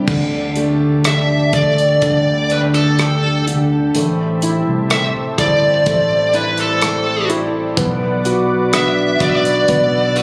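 A bright, distorted high-gain lead guitar sits up front from 1.1 seconds, carrying the melody of a tender, hopeful pop ballad at 63 BPM, while a warm concert grand piano with deep bass plays accompaniment, a smooth, warbling vintage analog pad holds lush chorused chords, a dark, full-bodied fingerpicked steel-string acoustic guitar arpeggiates in the background, and a punchy fretless electric bass and a modern studio kit of bright crash, hi-hat, kick and rim click underpin the Dsus4, Am7 and Bm changes, all captured on a phone in a small room with club reverb and compression.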